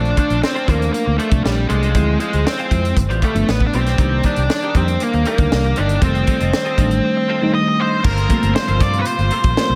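The recording sits in a dreamy wash of plate reverb, polished in the manner of 1980s jazz-funk pop, with a breezy, urban mood. Up front, a dark, fuzzy octave-fuzz lead guitar carries the melody through distortion and delay. A sparkling, bell-like FM electric piano supplies accompaniment through phaser and subtle chorus, while a bright, twangy twelve-string electric guitar picks a compressed riff in the background. Underneath, a fretless electric bass sounds warm and amped through analog chorus, and a tight funk drum kit with a high-tuned snare, tight kick, hi-hat and crash keeps a straight 4/4 pulse. The harmony moves from Bbmaj9 through Dm7b5, G7, Cm9 and F7 before settling on Gm11, and at 8.0 seconds a smooth, bowed studio string section slips in behind with sustained chords, just before this fragment of a longer piece cuts off at 9.8 seconds.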